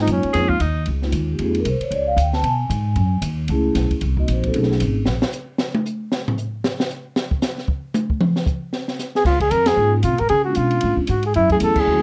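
Small-group jazz in a swing-and-bop vein, this brief, warm excerpt swings at a brisk pace with a dark production and light reverb. A breathy flugelhorn with light vibrato carries the melody, heard only at the very start and again from 9.2 seconds, while a bright, forceful tenor saxophone cuts in with a short punchy second line near the opening. Vibraphone played with soft mallets supplies mellow, ringing chords colored by a slow motor vibrato, and a woody pizzicato upright bass sits up front beneath it. The open drum kit, with its high-tuned snare and boomy kick, takes a solo from 5.1 to 9.3 seconds as the harmony drops away, moving across ride, hi-hat, toms and crash. The band returns with sharp accents at 9.6 and 11.7 seconds over rich extended chords before the clip breaks off.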